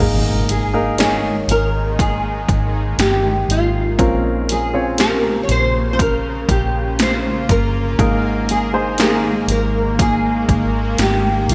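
Tender and heartfelt, this slow pop ballad excerpt sets a full-bodied, fingerpicked nylon-string guitar melody with finger squeak and ensemble chorus over polished grand piano, a dark, round, foam-muted fingered electric bass, and a punchy, overdriven analog drum machine with gated reverb up front, while a very quiet electronic impact sounds at the start and an ethereal, warbling ambient pad with octave-up shimmer enters at 1.1 seconds, all within a bright 1980s-style digital production bathed in plate reverb.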